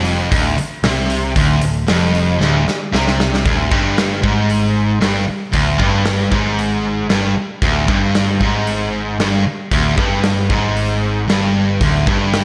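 A straight 4/4 hard rock pulse at 115 BPM drives this powerful, swaggering excerpt, where a bright, up-front cranked stack guitar and a sludgy, warm distorted guitar tucked in the background grind out a low overdriven riff over a growly, punchy picked electric bass and a big, dark acoustic drum kit with gated reverb and a punchy kick, all set in a lush hall with bright 1980s-style digital production, as a drum fill at 2.4 seconds carries the harmony from Dm7 to Dsus4 at 3.5 seconds.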